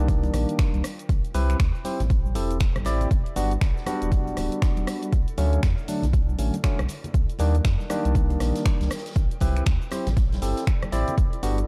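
A swung deep house groove in 4/4 opens this warm, moody passage cut from a longer piece, anchored by a punchy, up-front electronic kick and a rubbery, nasal square-wave bass that pumps against it from the first moment. Around them, a layered electronic kit adds dark hi-hats, finger snaps, rim clicks and shaker. Thick-skinned congas played with hard hands sit in the background, and a very quiet soft-mallet kit contributes natural hi-hat and snare. A barky tine electric piano plays stabs through a combo amp, lightly overdriven, pumped, low-pass filtered and echoed by a digital delay as the chords move from Cm9 through Am7, Em9 and Bm9 before circling back. From 0.5 seconds a cloudy, blurred granular pad drifts high above, very quiet and evolving. The production is dark and warm, set in a small room ambience.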